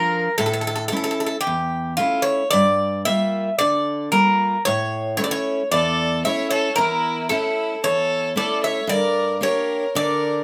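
A moderate studio reverb surrounds this cool, moody excerpt of Greek folk music from a bouzouki band in a straight 4/4. Up front, the bouzouki carries the melody with a bright, metallic ring from its doubled strings, some octave-doubled, while a picked steel-string acoustic guitar with an auditorium body accompanies over chords moving between A and G minor. At 5.7 seconds a clear, focused violin enters, one player bowing a second line with vibrato.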